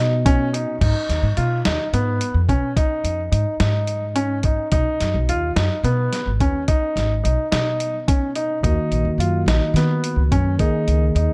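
A woody, thumpy pizzicato upright bass sits up front in this brooding, intricate progressive instrumental excerpt in 7/8 at 214 BPM (eighths) in G# dorian, where a present grand piano with long sustain plays arpeggios, a muffled, pitched-down sampler-style drum kit with a thumpy kick, crash, hi-hat and snare enters at 0.3 seconds, and a worn, slightly out-of-tune, lightly overdriven tine electric piano sounds briefly at the start and returns at 8.6 seconds over a B, G#m, B, D#m progression, all set in dark production with light reverb and digital ambience.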